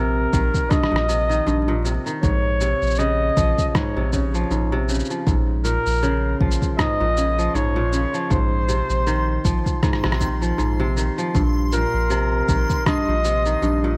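Delicate and intimate, this folktronica excerpt moves at 79 BPM with a gentle swing on the 16ths, its chords shifting over a held Bb in the bass. A clear, vintage-toned flugelhorn sings the melody with vibrato above crisp, ringing fingerpicked kora arpeggios, both touched with delay, while a round, dark analog bass sits up front beside a deep, tape-warm electronic kick and muffled, pitched-down cabasa and rim click. At 6.1 s a reversed, granular texture drifts in the background, bright and dreamy, and the whole recording is wrapped in light reverb and vinyl crackle.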